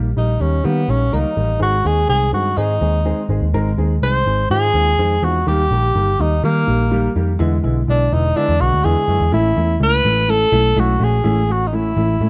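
Uplifting and warm, this uptempo 1960s-style soul cut moves at 124 BPM in a straight 4/4 in Ab major, with a breathy tenor saxophone taking an up-front pop-style solo from 0.2 s, its subtone voice carrying light vibrato, scooped notes and a smooth top. Beneath it, a round, foam-muted vintage electric bass sits forward in the mix, while an intimate upright piano adds woody, slightly detuned accompaniment with audible action noise. The dark production carries light reverb, and at 9.3 s the harmony shifts to A as the piece moves into a new section before the cut ends at 12.3 s.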